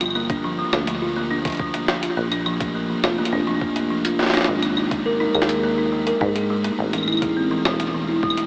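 Intricate and melancholic, this short IDM excerpt moves at 104 BPM in G dorian, its chords passing from Gm7 through Bb5 and Absus2 to A5. An up-front, buzzing kalimba rings out woody, airy arpeggios through tape echo, while a deep, rubbery acid bass adds dark, resonant sawtooth plucks beneath. A gritty, pitched-up jungle sampler-style kit of claves, hi-hat and high-tuned snare, also fed through tape echo, plays from the start and is joined by a thumpy, compressed electronic kick from 0.3 seconds, all in a dreamy mix soaked in huge ambient reverb with an AM radio sound.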